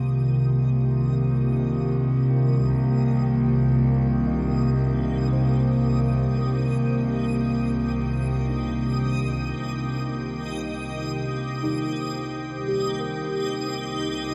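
In a slow, straight 4/4 at 57 BPM, this reflective, spacious ambient piece in C minor, taken from a longer work, drifts from Cm11 to Fsus2/C at 12.7 seconds. A warbly, nostalgic tape-like pad sits up front with chorus and its own reverb, while a nasal, gut-string chamber cello section holds a low C beneath and a calm, organ-like drone fades in. Muted, felt-like synth keys fade in with arpeggios in the background through chorus and analog delay, joined by a reversed, granular swelling texture that fades in bright and dreamy, the whole mix soaked in a huge, lingering reverb.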